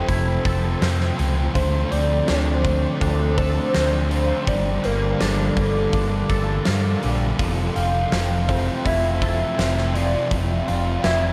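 A soft, round sine lead carries the melody in this wistful, hazy shoegaze and dream pop excerpt, drifting through chorus, phaser and a diffuse ambient delay, its sustained notes shaded by vibrato and portamento. Beneath it, a bright, clean twangy guitar picks arpeggios in an ensemble chorus and the same delay. Meanwhile, a very quiet, slightly broken-up guitar through a small old amp and a thick, distorted fuzz guitar with subtle chorus both play riffs. From 0.1 s a dark, round fingered bass sits up front, and a huge arena kit adds a fat snare, punchy kick and hi-hat with a big, natural room sound. The dreamy mix is soaked in reverb with a 9.0-second decay, drifting in a straight 4/4 feel from Fmaj7 through Dm7 and Gmadd9 back to Fmaj7.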